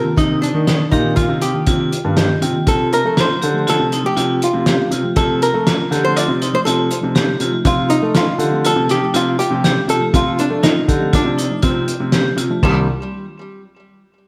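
Awash in a moderate recital-hall reverb with a big arena sound, this brooding, driving progressive instrumental excerpt in 5/4 at 121 BPM sets a dark, hollow-body archtop guitar melody with slapback echo and digital delay up front. A worn, slightly out-of-tune tine electric piano sits in the background with slapback echo and adds a brief fill at 1.9 seconds, while a metallic, ringing hard-mallet vibraphone with slow motor vibrato and digital delay spins arpeggios. A clear concert grand carries the deep bass line, and a muffled, gritty cloth-damped drum kit, entering at 0.2 seconds with a fat snare, tight kick and dark cymbals, drives the groove as the harmony moves from Cm7 to F/C.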